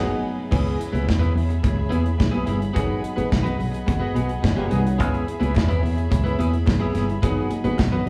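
Recorded as a band playing live in one room with moderate large studio reverb, this sultry, glamorous disco excerpt in C# minor at 107 BPM opens on a band accent before a tight, up-front drum kit with bright cymbals and high-tuned, damped congas enter at 0.5 s, over a punchy, foam-muted fingered bass, a twangy, slightly broken-up electric guitar, a clear baby grand piano in the background and dark sul tasto strings holding soft-attack chords that move between G#m7 and C#m7, with very quiet, crisp group handclaps joining at 5.6 s.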